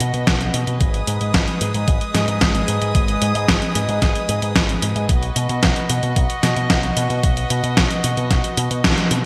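Bright 1980s-style digital production fills this short italo disco clip, bathed in a lush hall reverb with digital ambience and a faint edge of lossy compression artefacts. The mood is danceable and romantic, set over a straight 4/4 metre. A dark studio string section holds sustained chords with a soft, bowed, sul tasto attack and a smooth, floating top, moving from B to G#m and returning to B at 5.1 seconds. Up front, a picked electric bass runs through an envelope filter and digital delay, sounding punchy and direct. A detuned 8-bit drum machine supplies hi-hat and a medium-tuned snare with gated reverb, while a thumpy, sampler-style electronic kick joins at 0.3 seconds. The full band hits an accent at 8.8 seconds just before this fragment of a longer piece cuts off.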